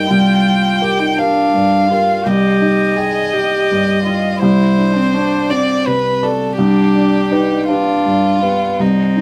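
A felt-muted upright piano, mellow and intimate with audible action noise, opens alongside a sul tasto violin carrying the airy, lightly vibratoed melody and a pure, floating cello second line in this reflective, fragile neoclassical fragment, which moves in a rubato 6/8 at 56 BPM over Gm7/C, Cm, D7/C and G/C inside a short, wet booth ambience heard from further back in the room.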